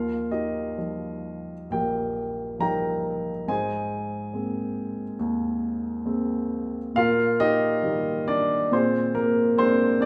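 A dark, mellow baby grand piano sits up front in this tender, lyrical classical solo fragment in Eb major, moving with a rubato feel around 68 BPM in 4/4 through Ebadd9, Abadd9, Eb/Bb and a closing Bb7 at 8.7 seconds, all bathed in the wet reverb of a recital hall.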